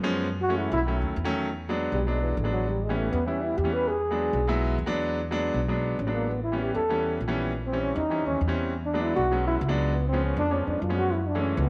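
Lively and danceable, this brisk jazz excerpt in E mixolydian moves at 199 BPM in a straight 4/4 feel, cut from a longer piece. A breathy trombone carries a solo across the whole passage, entering at 0.4 seconds with a dark, smooth-topped tone and a light vibrato in a jazz style. Beneath it, a clear concert grand piano supplies up-front accompaniment with natural character and a deep low end, while a pizzicato upright bass with steel strings gives a woody, growly pulse. The harmony turns through dominant-ninth colours such as E9 and A9, passing an A#dim7 and a C#7 before settling back on F#m7 near 11.1 seconds. A moderate echo chamber reverb and small room ambience place the ensemble in a compact, moderately reverberant space.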